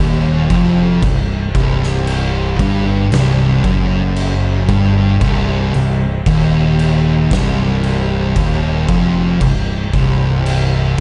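A pair of thick fuzz guitars anchors this brooding, hypnotic stoner and doom metal excerpt, one warm and the other darker and set in the background, both grinding out a distorted riff low in the register over a C minor chord at a crawling 57 BPM in 4/4. A fingered electric bass adds a bright, growly overdriven edge beneath them, while an oversized low-tuned acoustic drum kit enters at 0.5 seconds with a boomy kick, fat snare and dark crash cymbals, its gritty, saturated sound pumping in a stone room. The production is dark overall with light reverb, and the passage is cut from a longer piece.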